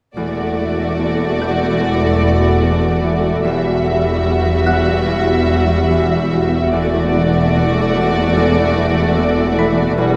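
A focused, vibrato-laden violin section carries the melody in this eerie, tense suspense film score at 73 BPM in 4/4, with a second, rich violin line beneath it and lush, intense violas in the background, all moving over D/E and Emadd9 harmony. Expressive cellos and smooth, even double basses anchor the low end, while a fingerpicked Celtic harp rings out a riff and a glassy, ethereal FM pad with ensemble chorus fades in at 0.5 seconds. A delicate, tinkling vintage music box appears at 1.4 seconds and a warbling, detuned organ-like drone at 1.6 seconds, all set in a wet scoring-stage reverb in this excerpt from a longer piece.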